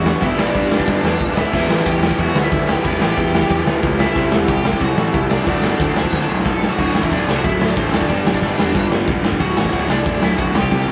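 The raw garage drum kit sits up front with a boomy kick, a medium-tuned snare, crash and ride cymbals, and a gritty, saturated sound in a bright stone room that pumps. This is an energetic, upbeat punk rock excerpt at 183 BPM in a straight 4/4, moving from D major into D mixolydian at 6.8 s over chords that run from G through Em, C and D, then G5 and D. A double-tracked, overdriven garage guitar plays the riff up front with a lo-fi, picked edge, while a high-gain lead guitar carries the melody with a distorted bite. Underneath, a picked electric bass with overdrive and fuzz adds a growly low end. Drum fills arrive at 6.1 s, just before the second section begins, and again near the close, all set in light reverb.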